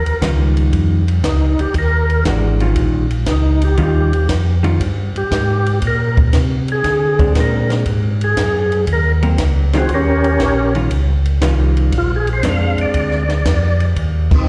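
A fat, lightly overdriven tonewheel organ carries the melody over a round, mellow organ bass line, both turning on a slow rotary speaker with chorus vibrato and key click, as this bluesy, swinging soul jazz organ trio excerpt in Eb mixolydian moves at 118 BPM through Eb9, Bb9 and Ab7 changes, joined by a dry compact cocktail drum kit with dark cymbals, a high-tuned snare and a punchy kick, and by a dark, compressed hollow-body jazz guitar with slapback echo comping until 13.2 seconds, before the organ solo gives way to a band accent at 14.2 seconds, all heard through a live venue's PA with recital hall reverb and small room ambience.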